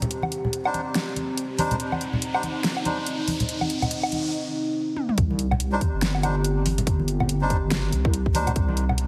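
Swung sixteenths over a half-time 142 BPM pulse drive this dark, meditative deep dubstep fragment in C minor, where a detuned sawtooth pad with chorus and phaser holds moody chords throughout, joined by overdriven kit drums with a huge snare, toms and woodblock, small-room congas, and reedy, breathy melodica stabs soaked in dub echo. A riser sounds through the build-up from 0.4 to 4.3 seconds, and a drum fill at 5.0 seconds tips into the drop at 5.2 seconds, when a tight, up-front electronic kick and a deep, saturated square-wave wobble bass arrive as the harmony shifts to Cmadd9. A lush hall reverb surrounds the mix, while heavy multiband compression gives it a squeezed radio sound.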